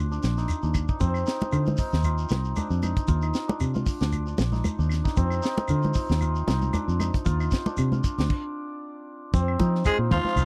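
A shimmering, ringing hammered dulcimer plays arpeggios from the start alongside a round, foam-muted fingered electric bass sitting up front, setting a defiant, driving afrobeat groove with a light sixteenth-note swing. A grainy, saturated shekere and a tight funk drum kit with a high-tuned snare, tight kick, hi-hat and crash join almost at once, while woody claves sit in the background and bright, thin-skinned congas played with soft hands fill in the percussion. A stop hits at 8.3 seconds. Then at 9.9 seconds a raspy, growling tenor saxophone steps forward with the melody, backed by a brilliant trombone on a second line, both with light vibrato. The dry, close sound recalls a 1970s studio, and the passage is cut from a longer piece.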